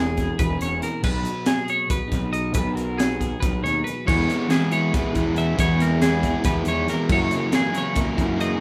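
A bright, twangy twelve-string electric guitar carries picked arpeggios in the background in this wistful, intricate math rock and midwest emo passage, cut from a longer piece and set at 277 BPM in eighths in a straight 7/8. Alongside it, a second clean, compressed twelve-string guitar picks out accompaniment up front, touched with spring reverb, while a fuzz-drenched fingered electric bass adds a round, punchy, overdriven low end. A crisp fusion drum kit with a high-tuned snare, punchy kick, hi-hat and crash sounds gritty and saturated in a small, pumping room. At 4.1 s a crunchy, double-tracked overdriven guitar enters up front with a riff, thickening the texture as the harmony in B major moves through E6, B6, back to E6 and on to F#9. Tuned to A4 = 436 Hz, the recording has the rough feel of a home demo mix, with a bit of studio ambience and little reverb overall.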